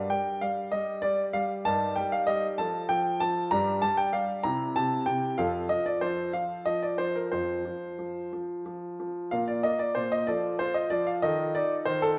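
A clear concert grand piano plays alone and up front throughout this short classical-period sonatina, its natural tone reaching from a deep bass up into the upper register. The mood is playful and graceful, with a six-eight metre and an elastic rubato feel that lets phrases breathe. The opening passage moves from G minor through E-flat and F toward C and F. At 9.3 seconds a new passage begins on B-flat, then turns to F and an F7 over E-flat, as though the piece continues beyond this fragment. A moderate recital hall reverb surrounds the instrument with a sense of real space.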